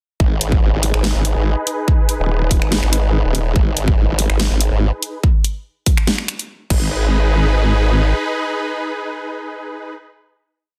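A dense, heavily limited modern master in digital ambience carries this heavy, chaotic half-time wobble dubstep piece, where a punchy, overdriven electronic kick and an up-front kit with a huge snare, closed and half-open hi-hats, finger snaps and crash drive the drop until 6.8 s, while a saturated, detuned formant-sweep wobble bass with chorus and overdrive shifts its wobble speed until 8.1 s, and lush, bright supersaw chords pump under sidechain through a low-pass filter into the final hit, sustaining to 9.9 s.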